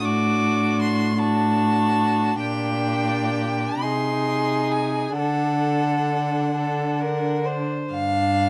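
Yearning and elegiac, this brief passage from a slow romantic movement for string quartet unfolds in 6/8 at roughly 40-53 BPM, counted in dotted quarters, with a flexible rubato that lets each phrase breathe. The first violin carries the melody high in its range, its tone full and singing with steady vibrato, set up front alongside the cello. Beneath it the second violin traces a smooth, even inner line and falls silent at 7.9 seconds, while the viola supplies a clear, gently vibrant accompaniment in a narrow middle register. The cello anchors the bass with a focused, resonant sound that sits prominently in the balance. The harmony moves from D over A through G minor and A-flat chords to D, arriving on a bare G sonority at 7.9 seconds. Captured with close, detailed microphones and little reverb, the playing feels intimate, with every bow stroke present.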